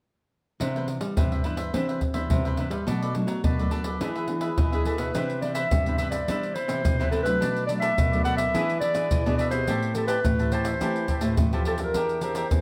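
Samba and choro in a lively, joyful vein, where a crisp picked cavaquinho, a small fingerpicked nylon-string guitar and a full-bodied nylon-string guitar on bass set up a groove with tight surdo, soft-handed pandeiro and maracas up front, until a breathy, jazz-style clarinet enters at 4.9 seconds with vibrato, subtone and scooped notes over Cmaj9, Bm7, E7 and Am9 harmonies in light reverb.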